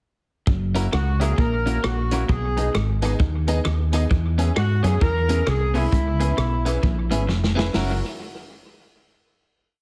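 A round, dark fingered electric bass anchors this short, bouncy ska piece, walking through the changes with slides and chromatic approach notes at a swung 132 BPM in F# mixolydian. Up front beside it, a vintage acoustic drum kit with a punchy kick, medium-tuned snare and side-stick backbeat drives the ska beat, its sound touched by tape echo. A drum fill at 7.3 seconds leads into a closing F#7 chord that rings from 7.7 seconds. In the background, one clean, picked electric guitar chops on the off-beats, while a second guitar doubles the bass line with muted picking through a phaser, joined by a bright, woody, slightly detuned upright piano that also chops the off-beats. A mellow horn section with light vibrato sits at a distance, playing a motif-based melody in song-like phrases over the progression of F#7, B6, E6 and C#m7. The whole mix is heavily compressed, with a radio-like dulled top and a large studio reverb that lends the upbeat tune a vintage character.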